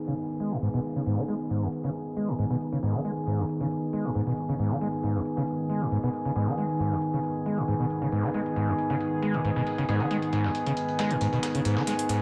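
A moderate plate reverb and low-pass tone frame this driving, industrial peak-time techno excerpt in G# minor at 136 BPM, sitting on a single G#m chord as a filter sweep runs through the 12.2 seconds. Up front, a screaming, squelchy acid riff with distortion, lush chorus and tape echo sits beside nasal, edgy sync-sweep polysynth stabs with chorus and tape echo, while a deep, dark ambient pad drones very quietly beneath. A very quiet downlifter sounds until 2.8 seconds, metallic layered electronic hi-hats tick along, and a gritty, compressed sampler-style kit of hi-hat and snare sits in the background.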